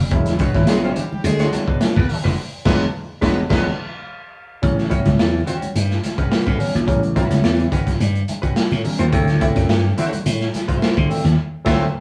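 A growly, punchy slap bass sits up front in this playful, energetic funk clip cut from a longer piece, driving a straight 4/4 groove over chords that move from E9 to A13 at 4.6 seconds and on to D9. Beside it, a crunchy breakbeat drum kit with a tight kick, medium-tuned snare and dark cymbals comes across saturated and gritty, its top end rolled off. A barky tine electric piano punches out bright stabs through a combo amp, while a dark, clean hollow-body jazz guitar picks a compressed accompaniment, and bright, damped congas tap along in the background. A horn section with light vibrato and octave doubling adds a loose, smooth second line early on, dropping out at 3.7 seconds and returning at 10.0 seconds. The band hits accents together from 2.4 to 4.6 seconds and again at the close, all caught live in one room with a wet studio reverb.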